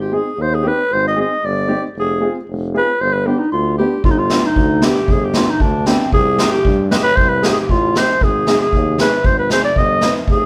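A raspy, growling clarinet carries the melody up front from the start, its vibrato and scooped notes giving a jazz edge to this bittersweet yet festive klezmer tune in G phrygian dominant at 115 BPM in 2/4. Beneath it a soft-attacked tuba holds the bass and a woody upright piano, its action noise audible, comps through chords moving from Ab to Fm, G, Cm and back to Ab. At 4.0 seconds a street-band drum kit with a boomy kick and medium-tuned snare joins up front, the band sounding live together in a moderate stone-room reverb.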